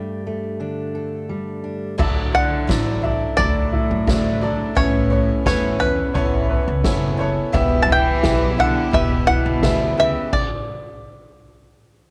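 A straight 4/4 pulse at 86 BPM drives this hopeful, anthemic indie folk excerpt in D major, where a twangy, percussive banjo carries the melody up front over full-bodied fingerpicked steel-string guitar before the arrangement builds at 2.0 seconds with a soft-mallet drum kit (boomy kick, fat snare, dark cymbals, cassette-tape grain), woody pizzicato upright bass, a shimmering octave-doubled twelve-string guitar, a polished grand piano with short sustain and open-toned upright piano arpeggios, followed moments later by a reedy bowed cello second line. An earthy chamber string section's sustained chords join at 7.5 seconds, until the band drops out and the banjo finishes alone in light reverb.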